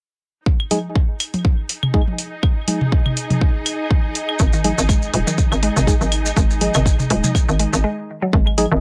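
Quirky and cool, this minimal techno excerpt at 122 BPM with a light 16th-note swing opens on a G#5 chord, where a punchy, up-front kick, metallic hi-hats, tape-warm claves and toms with delay, a dark, chorused organ stab and a distant, lush bowed string section fading in under sidechain pumping set the groove; at 4.4 seconds a hollow, bouncy FM bass and grainy maracas join in, followed at 4.5 seconds by a woody, bright mallet-like pluck with chorus and delay, and a brief break arrives at 7.8 seconds, the whole sitting in a light reverb.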